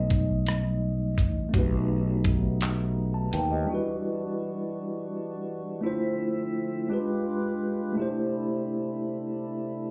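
Slow six-eight R&B in E minor at 56 BPM, yearning and sultry, cut from a longer piece and heard as a live gig through a club PA with light reverb and a dulled top end. A mellow tine electric piano with slapback echo opens with a short solo and carries chords such as B7b13, Em9 and C69 throughout, while a growly fretless bass and a gritty, compressed sampler-style kit with thumpy kick, hi-hat, rim click and handclaps sit up front before falling away by 3.7 seconds. A fat tonewheel organ through a slow rotary speaker enters at 1.5 seconds, holding sustained chords low in the mix to the end.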